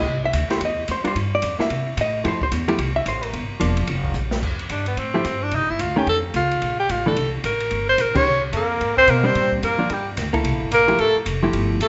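Relaxed and warm, this fragment of small-group swing and bop opens with a dark, clean hollow-body electric guitar up front, accompanying a woody pizzicato upright bass and an open acoustic drum kit with dusky cymbals and a boomy kick, all set in a recital-hall reverb with a dulled top end. After a drum fill, the bright alto saxophone enters at 4.7 seconds with an up-front solo line full of scooped notes and light vibrato. Following a band accent, a punchy trumpet adds a second line from 8.5 seconds.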